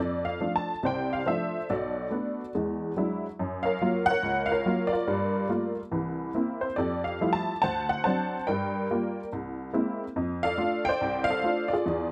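A detuned, jangly honky-tonk upright piano carries this short solo jazz excerpt in F major, swinging at 142 BPM in 4/4 with a loose, rubato feel and a warm mood. Bright and vintage in tone, the piano sits present and up front, caught by close, detailed microphones with a touch of light reverb. Over about 12 seconds it moves through colorful changes from F6 through Gbmaj7, Gm9 and Caug7 before settling back on F6.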